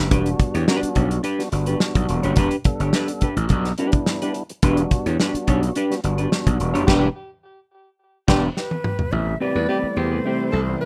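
Funky and hypnotic, this short funk cut sits at 107 BPM in a straight 4/4 over an Em7 groove that shifts to Am9 at 9.1 seconds. A gritty slap bass with growly overdrive and a warm, up-front soul drum kit with dark cymbals and a tight kick drive the groove, while a clean, dark semi-hollow electric guitar with subtle chorus plays accompaniment. A fat tonewheel organ adds stabs through a slow rotary speaker, its key click audible. At 6.9 seconds the band hits a run of accents, and a breathy tenor saxophone enters with a subtoned second line coloured by tape echo, followed by a drum fill and a hollow jazz flute carrying the melody from 8.6 seconds. A lush, warbling string machine comes in softly in the background with sustained chords as the harmony moves, all captured in a dry, rough home demo mix.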